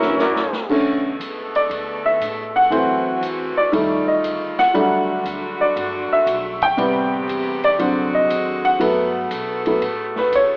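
This short excerpt sounds like a home cassette recording with an AM radio quality, set in a small room with moderate reverb. It is brassy, dramatic big band swing in B minor at 118 BPM, with a strong swing feel on the eighth notes. A drum fill on the vintage kit opens the excerpt, with a punchy kick, dark cymbals and a rolled-off top, under a brief, mellow saxophone melody that ends at 0.5 seconds and a quick stab from the clear, close-miked trumpet section. At 0.7 seconds a piano solo begins on the clear baby grand, up front with short sustain, moving through rich chords such as Bm9, F9, Em11 and Gmaj9. A bright saxophone section holds sustained chords with vibrato beneath it, while the woody, thumpy pizzicato upright bass sits in the background.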